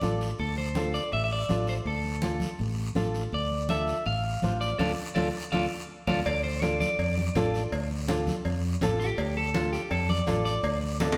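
A fiery, danceable cumbia in D minor at 164 BPM opens with a twangy electric guitar at the edge of break-up carrying the melody up front, its slightly broken-up tone wrapped in spring reverb, over a bright, fingerpicked flamenco guitar accompaniment with fresh strings. A punchy, fingered electric bass sits forward in the mix, while thick-skinned, damped congas stay in the background and a raspy guiro scratches close and dry. The band plays live together in a stone room whose reverb lends the whole performance a lively, reflective sheen, and the harmony rests on D minor throughout. A band accent from 4.8 to 6.3 seconds, capped by a drum fill, leads into a new section at 6.3 seconds, where ringing metal-shell cowbell and timbales join and the electric guitar takes a clean solo through to the end of the excerpt. Another brief drum fill arrives at 11.0 seconds just before the cut, as this passage is taken from a longer piece.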